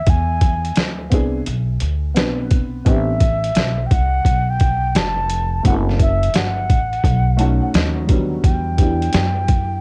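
Jazz-hop with a nocturnal, mellow mood, this short cut from a longer piece rides a loose, swung 4/4 groove. A breathy concert flute carries the melody with vibrato and a crisp attack, its rolled-off highs softened further by cassette tape and an analog delay. Underneath, a pizzicato upright bass with steel strings sits up front, woody and dark, while a compressed, pitched-down sampler-style boom bap kit supplies a thumpy kick, a medium-tuned snare and hi-hat, gritty and re-recorded in a large room. A slightly detuned upright piano enters at 1.1 seconds with boxy, short-sustain accompaniment and plays a fill from 7.0 to 8.4 seconds. The harmony drifts through E7b13, Amadd9, F#m7b5 and B7 before landing on Em9, and the whole piece has the close, dry feel of a home recording on cassette.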